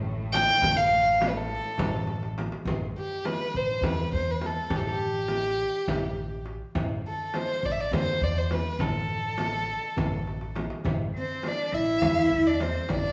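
A woody, thumpy pizzicato upright bass and a lush, distant bowed cello section holding a drone on A2 open this soulful, hypnotic excerpt of Turkish makam ensemble music in A makam ussak at 205 BPM in 7/8. At 0.3 s a dark, intimate sul tasto violin with light vibrato takes up the melody up front over a deep, saturated clay-shell darbuka and a hard-handed frame drum. The drone drops away at 2.7 s, and drum fills arrive at 2.1 s and 10.3 s, before a clear, focused solo cello enters as a second line at 11.1 s, the band ringing in a wet stone room reverb.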